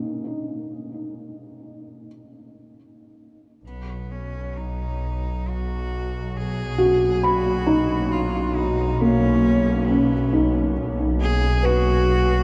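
Ambient piece in B major at 67 BPM, weightless and luminous, cut from a longer work and soaked in a huge, dreamy reverb with a cassette-tape character. A felt-muted upright piano opens alone with soft, intimate arpeggios, its thick felt and short sustain colored by subtle chorus and tape echo, moving from A#madd11 to Bmaj7 at 3.6 seconds. There a clear, earthy double bass section enters, bowed and distant, and a bright cello with a biting, airy bow and light vibrato fades in on the melody, trailing its own tape echo.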